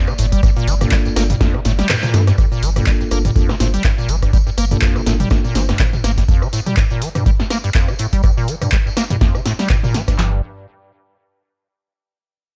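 Gritty and raw, this acid house clip, cut from a longer piece, opens on a very quiet, warbling pad of lo-fi sustained chords that stops at 2.4 seconds, with the kick dropping out from 1.9 seconds, where the band hits an accent. A squelchy, resonant square-wave acid bass riff, carrying chorus, cassette-tape grit and tape echo, rides over a round sine sub bass with sidechain pumping. Two analog drum machines, one booming with a deep kick and tonal snare, the other overdriven and punchy with claps, hats, rim click and toms, drive the swung groove alongside a jingly vintage tambourine, while a bell-like tine electric piano adds phased, echoing stabs until 5.6 seconds.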